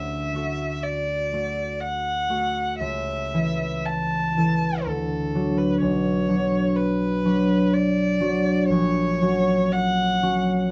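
Bathed in light reverb, this serene, warm passage from a longer romantic classical duo unfolds at 54-64 BPM in a rubato 3/4 in D major, with a rich, distant-sounding solo violin singing the bowed melody with expressive vibrato and portamento over a concert harp's ringing, thumb-plucked accompaniment, as the harmony moves from D through A/C# and Bm to F#/A# at 8.7 seconds.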